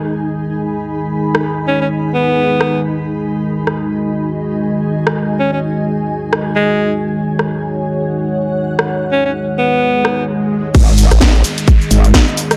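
A swaggering, gritty bass house piece opens on a moody, detuned analog pad pumping against a cloudy granular pad, then a tape-warm garage kit with a cracking, filtered snare and cabasa and a bright alto saxophone with light vibrato and tape echo take the melody before a swell and downlifter at 10.2 seconds lead into a drop at 10.7 seconds, where a tight electronic kick, an aggressive, saturated metallic wobble bass and a brief formant-sweep wobble bass push up front over a very quiet dusty sampler-style kit in a dark digital room.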